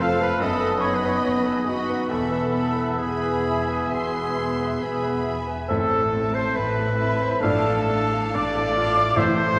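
A clear baby grand piano leads this passionate, tragic fragment of a romantic movement for piano and orchestra, its intimate, natural tone carrying the melody over a long sustain, with faint action noise audible beneath the keys. Lush, bowed violins also carry the melody high above with expressive vibrato, while a second, more distant violin line, soft in attack, joins an airy flute ensemble, a vintage-toned oboe and a roomy clarinet in the background. A punchy, dark bassoon and a smooth, very quiet viola section fill out the accompaniment, as a shadowy French horn section holds sustained chords and a trumpet with a smooth top adds gentle stabs. Cellos with a focused sound and distant double basses anchor the low end in the bass, and at 5.7 s soft-mallet timpani with round calf heads enter very quietly. The rubato phrasing and a generous scoring-stage reverb give the whole a sweeping, heartfelt grandeur.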